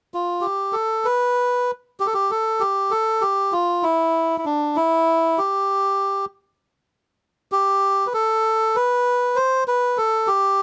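Stately and passionate, this short excerpt from a Turkish piece in 9/8 at 196 BPM, counted in eighths with a straight feel, features a lone melodica playing from 0.1 to 10.6 seconds between D4 and C5, its reedy, breathy, nasal tone sitting up front in a dry, close 1970s-style studio sound, with a new section beginning at 2.0 seconds.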